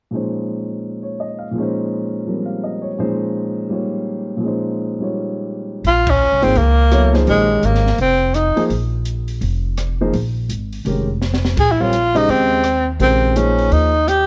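Swinging in 4/4 at 168 BPM, this modal jazz excerpt in Bb dorian has a spiritual, hypnotic mood and is cut from a longer piece. A dark, mellow concert grand piano opens alone on a Bbm11 chord, its deep bass sitting up front for the first stretch before the band enters at 5.8 seconds. There the woody pizzicato upright bass and an acoustic drum kit join, the kit heard in a small room with dark cymbals, a high-tuned snare, a punchy kick, ride, hi-hat and rim click. A breathy tenor saxophone takes the melody just after, whispered and intimate with vibrato, scooped notes and a soft attack, bathed in plate reverb and placed close to the listener. A band accent lands at 6.0 seconds, and a short drum fill leads to the saxophone's return at 11.6 seconds as the harmony shifts to Ab/Bb. Light reverb gives the whole a gentle sense of space.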